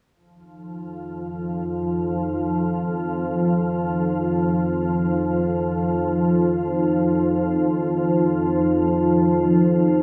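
In this unsettling dark ambient drone in free time, cut from a longer piece and resting on an F5 chord, a calm, detuned organ-like drone with ensemble chorus sits up front from 0.7 seconds, while a deep, moody pad of slow-attack sustained chords, wave-folded and ring-modulated with a sub octave and chorus, shares the same span, all bathed in a huge, wet reverb with an 8.4-second decay.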